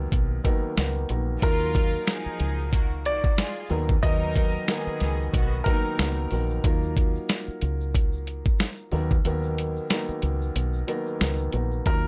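Boom-bap hip-hop at 92 BPM with a reflective, moody swing, built on a gritty, thumpy sampler-style drum kit, a round foam-muted dub bass and a dark grand piano with cassette-tape character and audible action noise, while a brilliant, woody upright piano melody with tape echo and floating sul tasto string stabs enter at 1.4 s over Bmaj7 and Ebmadd9 chords, a grainy tube shaker adds texture, and the kick drops out from 9.3 s in this dry-sounding excerpt.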